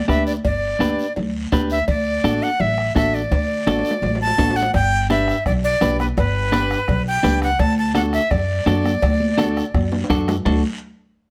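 Latin cumbia in D major at 168 BPM, joyful and danceable, this excerpt puts a breathy metal jazz flute with crisp chiff, reedy tone, vibrato and plate reverb up front over a clean, compressed picked electric guitar and a woody, dark pizzicato upright bass, while soft-beater bombo, bright high-tuned congas, raspy guiro and ringing cowbell and timbales sit in the background, with drum fills at 3.3 and 9.7 seconds rounding off each pass of the G-to-D progression.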